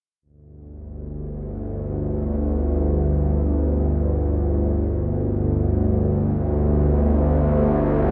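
Cavernous and unsettling, this ambient fragment from a longer piece drifts in free time, built on a single up-front, bowed-like drone that enters at 0.8 seconds and holds a G5 chord low in the register, between G1 and D2, until 8.1 seconds. The drone's nasal, detuned sawtooth tone carries a noise layer, vibrato and a tense, string-like edge, with a slow attack and long release that let it sustain and hang. A drenched cathedral reverb with a 6.7-second decay and a cassette-tape character add to the hollow, unsettled atmosphere.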